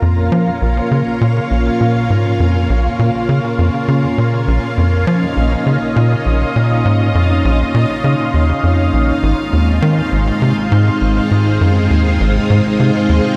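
A tight, punchy sequencer bass drives this cosmic, mysterious piece of ambient space music, its sawtooth and square-wave riff plucked with a fast attack and decaying tones from Ab1 to F3, carried by delay. Above it, a vintage string machine in full ensemble spreads lush sustained chords from Ab3 to Eb5, its slow attack, sub-octave weight, moving notch and ensemble chorus giving the sound a rich body. Higher up, a bubbling stepped-filter texture of detuned, resonant sawtooth wanders through random filter steps between F4 and F5, bright and soft-edged, with chorus and its own built-in reverb. At a straight 101 BPM in 4/4 and in Bb minor, the harmony rests on Bbm before shifting to Ab at 9.2 seconds. A shimmering reverb with a long tail bathes the mix, and this brief section runs to 13.4 seconds, cut from a longer piece.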